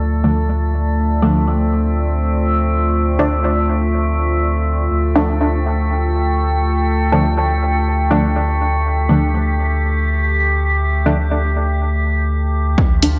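A nocturnal, cavernous dub techno excerpt in free time and D minor opens on a dark, detuned analog pad holding a sustained Dm chord with chorus, a round, up-front sub bass on D2, and a glassy sine texture of drifting overtones, all pumping under sidechain in a lush hall reverb, while muted, filtered chord stabs enter at 0.2 s through phaser, cassette tape and dub echo before a punchy, overdriven kick lands at 12.8 s and an overdriven, low-pass-filtered hi-hat follows at 13.0 s.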